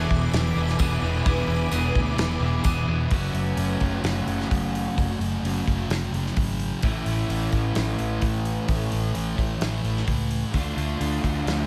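A dark, up-front fuzz guitar drives this wistful, blissful shoegaze and dream pop excerpt at 129 BPM in straight 4/4 alongside a crunchy overdriven guitar riff bathed in reverse reverb, a round, foam-muted vintage bass, and a loose indie kit with a fat snare and tight kick. A cloudy granular pad holds blurred chords until 3.1 seconds, and a jingly tambourine briefly sits in the background from 0.8 to 2.8 seconds. Everything moves from E7 through F#m and A to Dm in a dreamy mix soaked in plate reverb.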